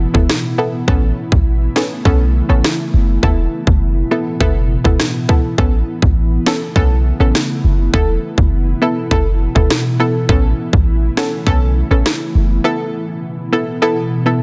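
Sunny and summery, this dancehall excerpt moves at 102 BPM in a straight 4/4, sitting in A major as the harmony rocks between Esus4 and Aadd9. An ethereal, airy pad of detuned sawtooth and triangle voices holds sustained chords throughout, softened by ensemble chorus and built-in reverb and breathing with sidechain pumping. Up front, a round, full-bodied analog pluck with a noise layer and filter sweep supplies short, chorused accompaniment figures. A deep, boomy 808-style sine bass anchors the low end until 12.6 s. An electronic island pop drum kit, overdriven with a tight kick, sharp snare and rim click, drives the groove until 12.2 s. The dense, heavily limited master gives the whole a modern sheen.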